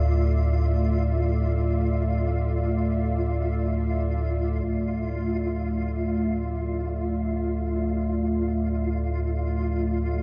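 A huge ambient reverb with a long 8.8-second tail fills this dark ambient drone fragment, a dark, warm production that feels unsettling and cavernous. It unfolds in free time in D minor, tuned to A4 = 439 Hz, and rests on a single Dmadd9 chord. Up front, a deep, ominous drone rumbles between D2 and A2, its detuned, wave-folded tone swelling in slowly and carrying its own reverb, and a filter sweep reshapes it from 4.6 seconds. Beside it, a sweeping resonant pad sustains full-bodied, evolving chords in a bright, chorused voice, while a faint flickering, grainy granular texture hovers on F4. Bronze, metallic gamelan-type bossed gongs play arpeggios, close-miked and round with a beating tone but barely audible, before falling away at 5.2 seconds.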